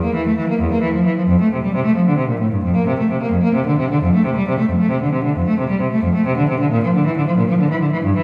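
In a rubato 12/8 lilt at 89 BPM in dotted quarters, this grave, solemn fragment of a baroque-style suite movement in F major features a single bowed cello playing unaccompanied throughout its 8.2 seconds, its rich, smooth, even tone colored with vibrato and ranging from E2 to Bb3, heard from further back in a recital hall whose wet 1.7-second reverb lends a distant glow.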